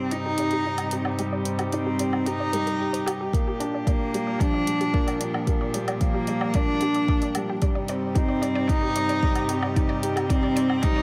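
A straight 4/4 pulse of layered electronic hi-hat and woodblock carries this moving, cinematic piano-and-strings electronica build-up, where a deep, up-front electronic kick joins at 3.3 seconds beneath an intimate sul tasto cello melody with light vibrato, a felt-muted upright piano riff with delay, low-pass-filtered gut-string quartet chords in a reedy period style, and a bright, detuned analog pluck arpeggio in the background that pumps with sidechain, chorus and delay under a filter sweep, all set in a lush hall reverb.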